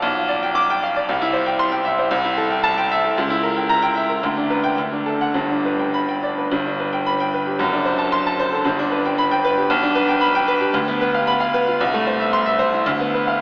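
A clear, open baby grand piano plays alone from the start of this brilliant, sparkling fragment of a classical virtuoso piano study, its long-sustaining, up-front tone spanning F#1 to D6 in a rubato 2/4 feel and moving through chords such as G7/B, C#dim7 and D7/F# as a first section gives way to a second at 6.5 s, bathed in a huge, wet ambient reverb that sets it in a vast, echoing space with an AM radio coloring.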